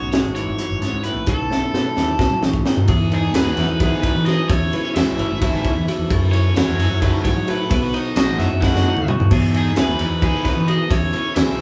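Bright and intricate, this math rock and midwest emo excerpt moves at 262 BPM in 7/8 in E major, driven by a crisp, up-front fusion drum kit with a high-tuned snare and tight kick in a pumping small room, a growly fuzz fingered electric bass, and a picked overdriven electric guitar carrying the melody over a twangy, compressed twelve-string electric guitar and a woody, ringing kalimba in the background, while a biting, double-tracked overdriven guitar riff joins at 3.3 s, drum fills land at 1.5 s and 8.6 s, and the chords move from E69/G# through B9sus4, Emaj7, C#m7, F#m7 and B7.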